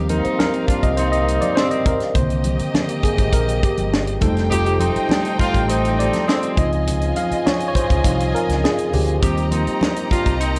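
Romantic and warm, this short cut from a longer piece is lush 1970s-style soul at 102 BPM in a straight 4/4, set in Eb major. A worn, slightly out-of-tune tine electric piano carries the spotlight as the solo voice throughout, its clean tone heard through a combo amp over a chord sequence that moves from Eb6 through Cm9, F9 and Dbmaj9 before returning to Eb6 at 9.2 seconds. Beneath it, an overdriven fingered electric bass sits punchy and amped, while a tight funk drum kit with a high-tuned snare and snug kick joins at 0.1 seconds, up front and natural in a small room, alongside very quiet congas struck with hard hands on bright, thin skins. A symphonic string section adds a bowed, vibrato-rich second line with a smooth top, and a pop-style horn section punctuates with present, lightly vibrato stabs. Far in the background, a dark, roomy French horn section holds sustained chords, and light reverb ties the ensemble together.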